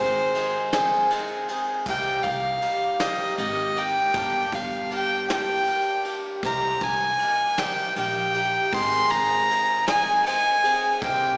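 Swaying in a slow 6/8 at 52 BPM with a straight feel, this short folk rock and heartland rock excerpt in C minor has a dusty, reflective mood. A rich, biting fiddle carries the melody from C5 to C6, bowed by one player with light vibrato and an airy, earthy tone, sitting close and up front with a slapback echo. Beneath it, a picked twelve-string acoustic guitar supplies bright, boxy, shimmering octave-doubled accompaniment with a swing quality, also placed up front. An upright bass plucks woody, thumpy low notes between G1 and C2, while a soft brush drum kit enters at 0.3 seconds with a punchy kick, medium-tuned snare, ride and crash cymbals. The chords move from Ab through Cm7 and Gm and back to Cm7 and Ab, heard as a live gig through the venue's PA with recital hall reverb and a small speaker sound.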